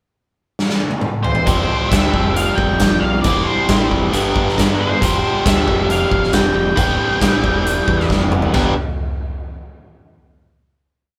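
Classic rock with a driving, sunny feel, opening on a drum fill from the big, naturally roomy kit, with bright cymbals, a punchy kick and a china crash, before a dark, fuzzy octave-fuzz lead enters at 1.2 seconds with motif-based phrases. From 1.5 seconds a biting, double-tracked overdriven guitar rings out chords over a growling, overdriven fingered bass that sits in the background, tied to the kick drum through a brief pre-chorus. Another drum fill at 8.1 seconds sets up the final chord, all captured as a band playing live in one room with light reverb.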